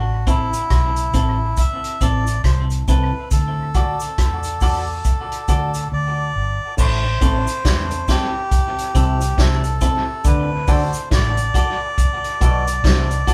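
A slow 69 BPM roots reggae groove in 4/4 with a swung sixteenth feel sets a hypnotic, meditative mood in A dorian, moving between Am and D, as a reedy, breathy melodica carries the melody over a dark, round foam-muted bass, a punchy vintage drum kit with dark cymbals, a clean, twangy electric guitar wrapped in dub echo and a cabasa tucked in the background, while after a break at 5.9 seconds a stringy, overdriven clav riff with auto-wah and dub echo enters at 6.8 seconds in a small, wet live room.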